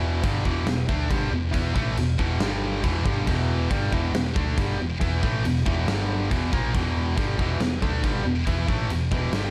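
Hard rock at 138 BPM in straight 4/4, tuned to A4 = 444 Hz, this energetic, anthemic clip pairs a bright, high-gain distorted guitar riff with a second overdriven guitar riff over a warm, round, amped picked bass, while a huge, natural-sounding arena drum kit with punchy kick, medium-tuned snare and crash cymbal sits up front from 0.2 s, the harmony shifting between E5 and G5 in a small room with light reverb.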